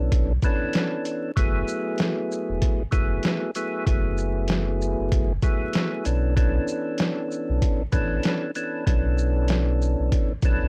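A mellow, round tonewheel organ with third-harmonic percussion, light overdrive and a slow rotary speaker opens this dark, moody boom-bap hip-hop excerpt, its cassette-toned chords moving from Bm11 to F#m11 at 1.4 seconds and back at 6.1 seconds over a deep, full sub bass with an octave and transformer saturation. A swung, sampler-style trip hop drum kit, pitched down, compressed and muffled, comes in at 0.1 seconds with a thumpy kick, medium-tuned snare, hi-hat and shaker, overdriven and up front beside the organ. The dry, gritty hardware sound carries vinyl crackle throughout.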